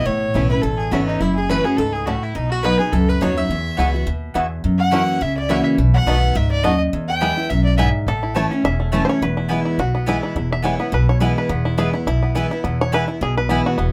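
A swung 210 BPM bluegrass drive in E major, rustic and driving, with a thumpy pizzicato upright bass and a full-bodied picked dreadnought guitar up front, a biting, close fiddle carrying the melody over a nasal slide resonator guitar in the background until 7.9 seconds, bright double-strung mandolin stabs entering at 3.8 seconds, and a twangy fingerpicked five-string banjo that takes a solo from 8.1 seconds in light reverb.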